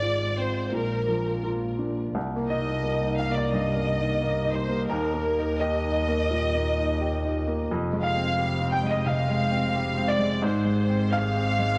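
Light reverb and a studio ambience frame this reflective, melancholic neoclassical passage for piano and strings, cut from a longer piece and played rubato in 4/4. Up front, a rich chamber violin section carries the bowed melody with vibrato and a touch of tape echo, while a clear, woody upright piano accompanies across a broad range. Beneath them, a single bowed double bass holds a focused low line, and a very quiet, deep, dark ambient pad with a slow attack sustains chords as the harmony moves from Ab6 through Cm7 and Fmadd9.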